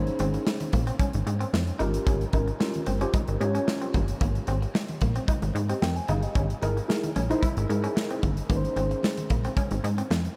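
A plucky, saturated analog bass sits up front in this feel-good, danceable early-eighties boogie funk excerpt at 112 BPM, alongside an acoustic drum kit with a punchy kick, a mellow tine electric piano with phaser, a bright, twangy clean guitar riff with subtle chorus, and very quiet damped congas, all soaked in a dreamy, huge ambient reverb as the chords move from Bbm11/Ab through Eb7, Ab6 and Dbm6/Ab.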